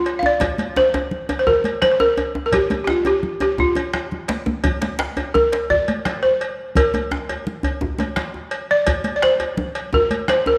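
West African traditional drum ensemble music, powerful and earthy, moving at 113 BPM in a straight 12/8 in Bb major pentatonic, with an up-front, woody, buzzing balafon played with rubber mallets carrying a dark, smooth melody between F4 and F5. Beneath it sit a metallic cowbell, a round bombo and a tight, cracking djembe in the background, along with warm, damped, high-tuned congas struck with soft hands and a deep, close djembe played with hard hands. A drum fill breaks in at 3.8 seconds in this cut from a longer piece, and a wet echo-chamber reverb gives the whole ensemble a roomy sound.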